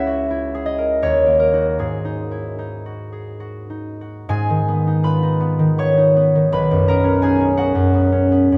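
A solo concert harp, up front and ringing, carries this brief classical excerpt, its fingerpicked tones spanning B1 to C#6 with a warm, acoustic presence caught by close, detailed microphones and light reverb. In 3/4 with a rubato feel drifting between 62 and 87 BPM, the music sits in G# minor and moves through C#m7, D#m7 and G#5 before shifting at 4.3 seconds to G#m6 and then Badd9. The mood is mysterious and wistful, and the fragment is cut from a longer piece.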